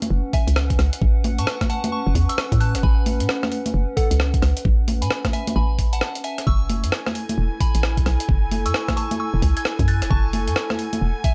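A dry, gritty cassette-tape recording in a digital ambience carries this soulful, sunny two-step garage excerpt. A pitched-up, compressed breakbeat sampler kit of congas, hi-hat and rim click swings over a layered electronic kick, while a hollow, bouncy FM bass punches up front beneath a warbling, nostalgic pad that pumps with the sidechain and a pure synth bell trailing tape echo and phaser. After a brief break at 6.0 seconds, the harmony shifts from A69 to F#m9 at 6.5 seconds, where an airy, breathy pad enters with its own sidechain pumping.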